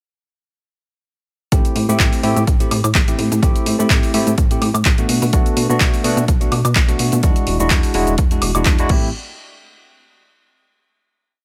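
Groovy and funky, this short filtered disco house piece runs at 126 BPM in 4/4 with a light 16th-note swing, sitting in A dorian. At 1.5 seconds the full band drops in together: a bell-like tine electric piano plays dotted-rhythm chords in close voicing, its bright, clean tone placed up front and colored by phaser and sidechain pumping. Beneath it, a plucky analog bass built from sawtooth, square and sine waves with wave-folding jumps between octaves, its fast-attack filter pluck decaying as it pumps with the kick. The overdriven electronic kick drives a four-on-the-floor pulse, up front and punchy, while an analog drum machine fills in programmed shaker, closed and open hats, high woodblock, claps and crash, both drum parts re-recorded in a large room. The harmony moves from Am7 to Bm7 at 5.1 seconds and E9 at 7.2 seconds before returning to Am7, and at 9.1 seconds the music breaks off to a final hit that rings until 11.0 seconds, with the overall sound kept dry.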